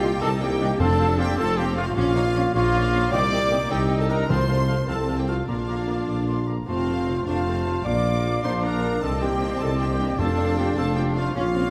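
A heroic adventure film score cue in a straight 12/8 at 103 BPM, cut from a longer piece, triumphant and soaring in F mixolydian as chords move between F, Bb, B-flat minor and C minor with an added ninth. A distant, lush symphonic violin section carries the melody high in the background, shadowed by a close studio violin section, an airy silver flute, a mellow cor anglais and a very quiet bright clarinet on second lines, while a warm, roomy French horn section holds chords and a mellow trumpet adds stabs. Underneath, a faint viola section, ringing fingerpicked harp arpeggios, a punchy tuba, cellos and double basses fill the lower range, hard-mallet timpani strike crisply from 0.8 to 4.8 seconds and again at 10.2 seconds, and a wet scoring-stage reverb surrounds the ensemble.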